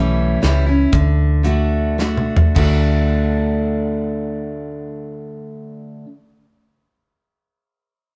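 A full-bodied picked jumbo acoustic guitar and a dark, round, foam-muted fingered electric bass, both up front, open this sunny, down-home honky-tonk fragment in D major and 3/4 at 102-125 BPM, moving from A7 to D as the tempo slows through the first 2.6 seconds, while a natural small-room country kit with a tight kick and medium-tuned snare enters at 0.4 seconds and plays a drum fill before stopping at 2.7 seconds, all set back in the room with light reverb.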